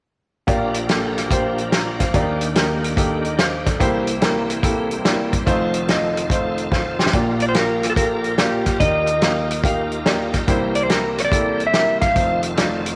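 An uptempo, soulful and uplifting gospel groove in Bb major swings at 144 BPM, opening at 0.5 s with an intimate grand piano full of deep bass and audible action noise, a dry, punchy soul drum kit with a fat snare, and a bright, lightly overdriven tonewheel organ holding sustained chords in the background through slow rotary speaker and chorus vibrato, key click showing. After a drum fill closes the first phrase, a dark, clean, fingered electric guitar takes the melody at 7.4 s with slapback echo, over a cycle of Bb6, Ebmaj7, C7 and F7. The whole excerpt sits in a small room ambience with moderate echo chamber reverb and is cut from a longer piece.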